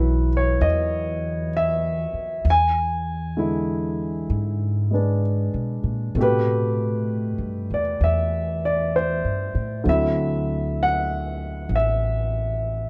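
A warm grand piano provides the accompaniment in this late-night, romantic jazz ballad, sounding intimate and natural up front, with its action noise audible beneath the chords. It moves through C#m11, E7, Am9 and D9 in an unhurried 4/4 at 65 BPM, with a gentle swung eighth-note feel, and it ranges from B2 up to G#5. An upright bass plays pizzicato alongside it for the full 12.9 seconds, its steel strings giving a woody, thumpy tone that also sits close to the listener. The pair share a light reverb, and the tuning rests slightly low at A4 = 436 Hz. This brief passage is cut from a longer piece.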